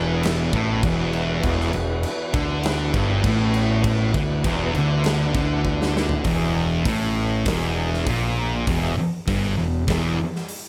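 A big acoustic rock kit drives a straight, steady four-beat pulse from 0.2 seconds, its punchy kick and medium-tuned snare sitting up front with crash, hi-hat and toms in a bright stone room. This hypnotic, brooding slice of stoner and doom metal, cut from a longer piece, is built on a pair of thick fuzz guitars playing a picked riff, one dark and up front and its twin tucked into the background. Beneath them, a fingered electric bass adds a round, overdriven fuzz that fills the low end with punch. A smooth, clean tonewheel organ holds sustained chords through a slow rotary speaker in the background until 6.2 seconds. A drum fill starting at 5.7 seconds carries the music into a new section, where guitars, bass and drums continue together under a light reverb.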